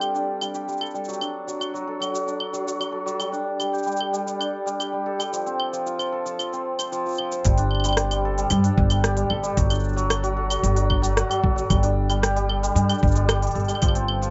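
Folktronica fragment at 113 BPM in 4/4, delicate and warm, where a mellow, shimmering hammered dulcimer plays up-front arpeggios through a low-pass filter, tape echo and plate reverb over smooth electronic hi-hat, cabasa, claves and rim click, until at 7.5 seconds a woody pizzicato upright bass and a muffled, thumpy, pitched-down sampler-style kick join the Gsus2 and D/G changes in a lightly reverberant, softened mix.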